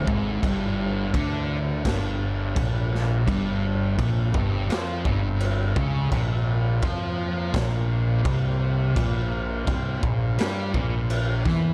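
A boomy, gritty garage drum kit sits up front with crash, kick and a medium-tuned snare in a small pumping room. Alongside it, two thick fuzz guitars (one dark and set in the background, one warm) grind out a picked riff from G5 to Bb5 at 6.1 seconds. A bright, growly fingered bass and a very quiet, nasal drone with moving overtones and chorus complete this brooding, sludgy 84 BPM stoner and doom metal fragment of dark, dry production.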